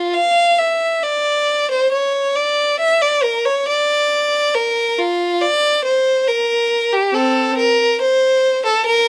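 Serene and dance-like, this short excerpt from a longer baroque-style suite movement features a solo violin in D minor, moving at an unhurried 69 BPM in 3/4 with a flexible, rubato feel and tuned to A4 = 442 Hz. The single bowed violin sits close and up front, its tone clear and focused with vibrato as it ranges from C4 to F5 over about 9.1 seconds. A light reverb lends the performance a soft sense of space.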